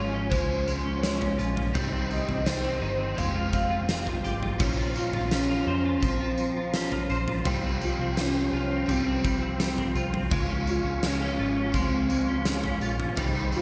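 A velvety, detuned synth lead carries the melody across this ethereal, haunting dream pop excerpt, its smooth sawtooth-and-triangle tone softened by chorus and delay as it moves between C4 and F5. Underneath, a clean electric guitar picks scooped arpeggios through ensemble chorus, slapback echo and delay, while an overdriven semi-hollow guitar adds hollow-body accompaniment shimmering with harmonic tremolo and analog chorus. A mellow, flute-like tonewheel organ holds sustained chords in the background through a fast rotary speaker, and a vintage muted fingered bass gives a dark, round, foam-muted foundation. At 0.3 seconds a huge arena drum kit enters up front with a punchy kick, fat snare, bright crash cymbals, tambourine and toms. The piece moves at a straight 84 BPM in 4/4, with chords drifting from Db through Cm and Fmadd9 to Bbmadd9 and Fsus2/C before returning to Db, all bathed in a lush hall reverb that gives it a big arena sound.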